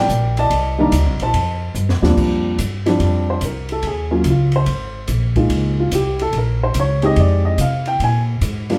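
A mellow baby grand piano and a woody, thumpy pizzicato upright bass open this relaxed, sophisticated jazz piano trio excerpt in Bb major, swinging at 144 BPM, with an acoustic drum kit of dark cymbals, a high-tuned snare and a boomy kick sitting lower in the mix, playing a fill at 1.8 s before the up-front piano takes a solo from 2.2 s over extended chords, all heard from further back in a moderately reverberant studio.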